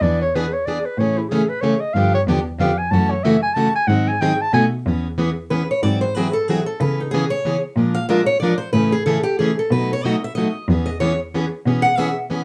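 A breathy, close-miked clarinet with subtone, vibrato and scooped notes leads this lively, swinging jazz manouche excerpt at 186 BPM in 3/4, mostly in E major, until 4.7 s; a picked steel-string acoustic guitar with finger squeak then takes over the solo line from 5.5 s, over the picked accompaniment of a boxy plugged-in parlour guitar with fresh strings and a dark, smooth bowed cello bass, the band playing live together in one room with moderate studio ambience.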